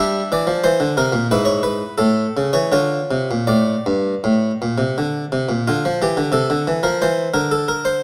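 A single harpsichord opens on an Em7b5 chord and plays alone through this 8-second excerpt of a baroque-style suite movement in D minor. The mood is solemn and introspective, with a rubato feel in 4/4 moving at roughly 79 to 91 BPM. The instrument has a round, full, plucked tone, sounding like an Italian-style harpsichord with one set of strings, miked closely and placed up front so that fine detail comes through. Its line spans from G2 to E5 as the harmony moves through E/G# and A before settling on Dm at 2.7 seconds. The opening section begins again at 5.7 seconds, and a Bbmaj9#11 chord arrives at 7.0 seconds, its sound carried by a moderate recital-hall reverb.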